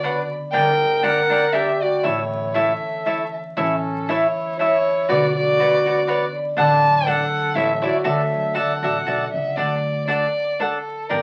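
A close, bowed solo violin with a dark, woody tone and vibrato carries the melody up front in this proud, festive mariachi-style Mexican folk fragment, set in 3/4 at 119 BPM in D major with a lightly swung, rubato feel. A classical-style solo trumpet with a smooth top and light vibrato plays a second line until 9.3 seconds, while a crisp, picked cavaquinho sits forward in the accompaniment, a concert harp adds ringing fingerpicked arpeggios, and a thumpy pizzicato upright bass enters at 0.5 seconds. The sound is steeped in short studio reverb and the crackle of a very old 78 rpm record, with the closing passage settling onto D from 9.6 seconds.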